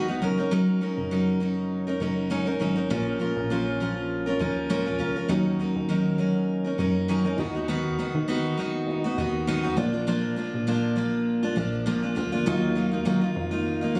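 A lightly swung 4/4 groove carries this reflective, wistful acoustic pop passage, cut from a longer piece, with a full-bodied picked steel-string acoustic guitar up front and a punchy, plucky analog bass with a fast-attack, decaying filter pluck beneath it. At 2.9 seconds a soft, felt-muted upright piano joins in the background, dark and intimate with audible action noise, and at 12.5 seconds a flute-like tonewheel organ adds sustained chords through chorus vibrato and a fast rotary speaker. The sound has the immediacy of a phone recording made in the room, with light reverb and compression.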